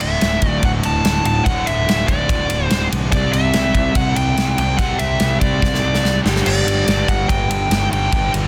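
A straight 4/4 pulse drives this anthemic, swaggering hard rock excerpt, anchored by a big, up-front acoustic drum kit with a punchy kick, medium-tuned snare and bright crash and ride cymbals that breaks into a fill at 5.6 seconds. Beneath it, a dark, double-tracked overdriven guitar riff moves from D5 through C to G5 alongside a fuzzy picked bass, while a nasal lead guitar with a parked wah carries the melody, treated with plate reverb and digital delay. The mix is dense and heavily limited, with a light reverb.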